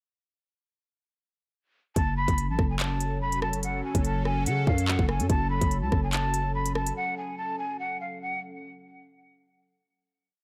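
A breathy jazz flute with lifted highs carries a looping, sampled-sounding melody in F# harmonic minor through a brief, ominous drill hook at 144 BPM in half-time, over a detuned sawtooth pad swelling on an F#m chord, a growling, buzzy 808-style bass with long sliding sub notes following the hard-clipped kick, and an electronic drill kit of crisp skipping hats, handclaps and rim clicks. All parts enter together at 2.0 seconds in a dry, up-front mix; the bass and drums drop out around 7 seconds, and the flute fades just before the pad closes the hook at 8.6 seconds.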